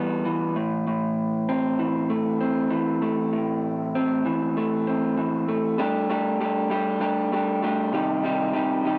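This is an upbeat, carefree rock fragment at 98 BPM in a straight 4/4, cut from a longer piece and tuned a touch high at A4 = 441 Hz. A single electric guitar plays alone for the full nine seconds, picked through a small old amp that gives it a slightly broken-up, compressed tone ranging from A2 to G4. The part sits up front, colored by cassette tape and an analog delay, so the sound comes across as lo-fi and homemade. The harmony opens on a rootless Cmaj7 and moves to Am, then shifts at 5.8 seconds to Gsus2 before landing on C minor near the end. A moderate booth ambience with a short decay keeps the room close and dry, in keeping with the home cassette recording.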